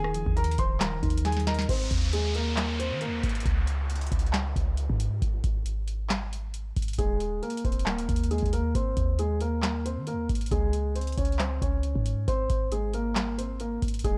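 A booming analog drum machine drives this triumphant yet wistful trap excerpt in a half-time feel, its deep kick, tonal snare, metallic hi-hats, handclaps and rim clicks overdriven and sitting up front with a short room tail on the snare, clap and hats. Beneath it, a clean 808-style bass runs throughout, its dark, sine-like tone hitting with a fast attack and decaying into a boomy low end. A vintage-sounding concert grand carries the melody, smooth and full in the bass, softened by a low-pass filter and tape echo. At the start, muted felt-like synth keys add an intimate, hushed layer with chorus before a drum fill leads into the main section at 1.7 seconds, where the keys drop away and an electronic downlifter enters. The piano falls silent at 3.2 seconds, leaving the beat, bass and downlifter for a stretch, then returns at 7.0 seconds over a cycle of power and add9 chords. The overall sound is dry and gritty, with little reverb and a raw hardware character.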